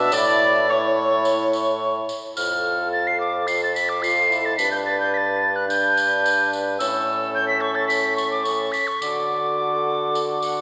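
Bathed in a wet church reverb, this festive, courtly Renaissance-style consort dance, cut from a longer piece, sets a hollow, airy soprano recorder up front with a tongued chiff on the melody, while a rich, nasal bowed viola with light vibrato sounds more distant on the second line. A bright trombone supplies the accompaniment and a clear, soft-attacked bassoon carries the bass, with a quieter, jingly tambourine adding percussion. In straight 4/4, a brief opening passage gives way at 2.4 s to a longer section as the harmony moves from A through F and G, returns to A, and reaches D.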